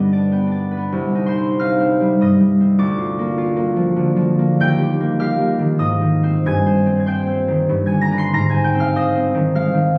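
Mysterious and wistful, this short cut from a longer classical piece for solo concert harp sways in a rubato 3/4 with uneven beats, its bright, ringing, thumb-plucked tone sitting up front and spanning G1 to C7 through a shifting chord sequence, all heard through the wet reverb of a stone room as captured on a compressed phone recording.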